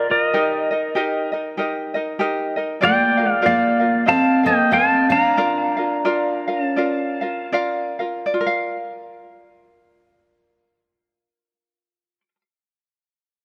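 A moderate echo-chamber reverb gives this relaxed, dreamy Hawaiian piece in Bb major a roomy glow, with a gently swung 4/4 feel that slows from about 97 toward 73 BPM between 2.8 and 8.3 seconds. Up front, a clean, compressed electric pedal steel carries the melody with fingerpicks, slide and volume swells through a delay, while a light, fingerpicked tenor ukulele plays accompaniment over Eb, Bb and F7 until 12.4 seconds. From 2.8 seconds a warm, picked dreadnought acoustic guitar adds a low second line.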